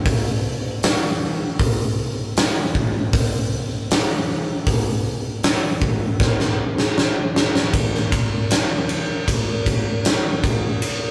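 A big rock drum kit leads this anthemic, cathartic rock excerpt at 78 BPM in a straight 4/4, its fat snare, tight kick, hi-hat and ride cymbal sitting up front in a natural big-room sound with light reverb and warm saturation, typical of a rough rehearsal-room recording, with a drum fill from 6.2 to 7.7 seconds carrying the groove into a new section.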